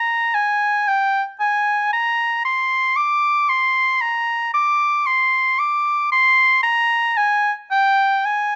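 Dance-like and flowing, this brief 8.6-second fragment of a baroque-style classical fantasia for unaccompanied oboe moves in a rubato 3/4 at 57 BPM, the solo oboe sitting up front with a bright tone and light vibrato as it sings between G5 and D6 in a softly reverberant space.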